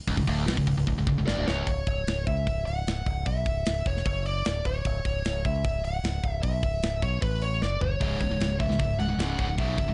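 This dark, heavy metal excerpt has a dry, murky production with a rounded top end and little reverb, cut from a longer piece in a steady four. A bright, double-tracked high-gain rhythm guitar sits up front with a picked, distorted riff low in its range, dropping out at 1.7 seconds and returning at 8.0 seconds. A growling, overdriven fingered bass runs throughout, direct and amped with a biting edge and placed just as forward. An acoustic metal drum kit of hi-hat, kick, snare and toms in a studio room drives the music with a tight kick and a medium-tuned snare, adding a couple of fills along the way. From 1.3 seconds a shadowy, high-gain lead guitar carries the picked melody with distortion and delay, moving through brooding minor harmony.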